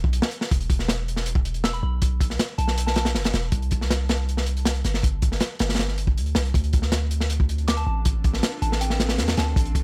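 A small room ambience surrounds this dark, frenetic excerpt of drum and bass in a jungle vein, moving at 159 BPM in straight 4/4 and centered on D dorian. An up-front, crunchy breakbeat kit drives the whole passage, its saturated, gritty character coming from a tight kick, a medium-tuned snare and hi-hat, with a mid-forward tone and a rolled-off top. Beneath it, a deep, sine-based 808-style bass holds long, decaying notes that stay mellow in the low register. A soft, pure FM bell sits in the background, appearing at 1.6 seconds and again near 7.7 seconds, shimmering through chorus, phaser and dub echo. From 7.5 seconds a granular cloud pad enters far back in the mix, its detuned unison voices blurred and evolving, with a slow attack and long release bathed in its own reverb. The harmony moves from E5 to C5 power chords before settling on Dm7.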